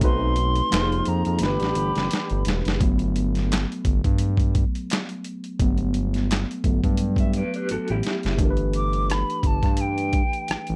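Soulful and smooth, this neo-soul R&B groove in G major moves at 86 BPM with a light sixteenth-note swing, cut from a longer piece. A gritty, pitched-down boom bap sampler-style kit sits up front with a thumpy kick, medium-tuned snare, rim click, hi-hat and handclaps, adding drum fills around 1.4 and 7.7 seconds. Alongside it, a sustained synth bass blending sawtooth, square and triangle tones with ring modulation holds the low end, while a worn, slightly out-of-tune tine electric piano, lightly overdriven through a combo amp, comps over chords such as B7b9 and Gmaj9 before taking a solo from 2.8 seconds. A clear, punchy horn section stabs in the background during the opening, as an airy, hollow jazz flute with vibrato sings a high melody that returns near the close. Briefly, a lo-fi, slightly broken-up electric guitar with tremolo adds a picked second line, all framed by light reverb and a dark, warm production.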